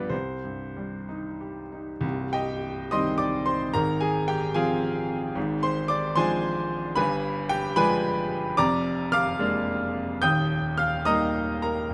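A bright, brilliant baby grand piano, up front and natural, plays alone in a lyrical, warm romantic character piece in a rubato 6/8 at about 61-76 BPM, moving from C minor through Fm/Ab, Dm7b5/Ab and G7b9 before turning toward Eb major from 8.6 s, spanning C1 to G6 with close, detailed sound and little reverb in this brief cut from a longer work.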